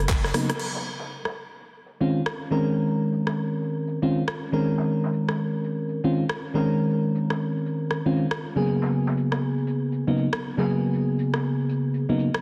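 Deep house excerpt with a sunny, warm swing, where a soft, round FM electric piano with chorus, tape echo and a dark filtered tone plays up-front stabs over Cbmaj9, Dbmaj7sus2 and Cbmaj7sus2 chords, supported by a layered, tape-warm electronic kit of crash, handclaps, hi-hat and rim click and a brushed acoustic kit of pumping filtered hats and a medium-tuned snare tucked in the background, all bathed in echo chamber reverb with a heavily compressed radio sound, opening with a drum fill and a band accent at 0.5 seconds.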